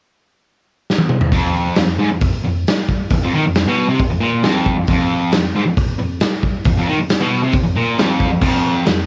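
Lo-fi home cassette recording with light reverb, this raw, menacing garage rock cut from a longer piece drives at 135 BPM in F minor. A gritty, saturated drum kit with punchy kick, medium-tuned snare, hi-hat, crash and toms kicks off at 0.9 seconds with a short fill, sitting up front with a dark, rolled-off top in a stone room. At 1.3 seconds a bright, double-tracked fuzz guitar joins with a compressed, picked riff between F2 and Eb3.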